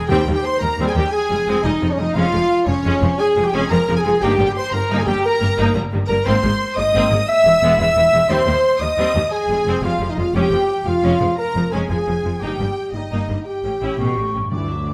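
A warm French horn section holds up-front sustained chords beneath a clear, focused violin melody in this adventurous, triumphant cinematic excerpt at 117 BPM in 12/8, with a soft-attack second violin line, a mellow background clarinet, rich viola accompaniment, smooth double basses and expressive cellos carrying the bass, hard-mallet timpani striking only at the opening and close, and an airy concert flute joining at 14.0 seconds, all set in a moderate scoring-stage reverb.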